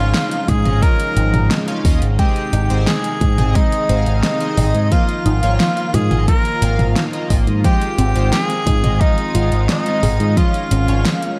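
A clear tenor saxophone with light vibrato carries the romantic, nostalgic melody through this synthwave excerpt, shadowed by an airy, dreamy chorused lead on tape echo and set over a mellow sidechain-pumped supersaw, glossy polysynth stabs, a punchy picked bass with an envelope filter, a pop kit with a fat snare, metallic hats and gated reverb, a tape-warm electronic kick, and a very quiet unison pluck arpeggio entering at 2.2 seconds.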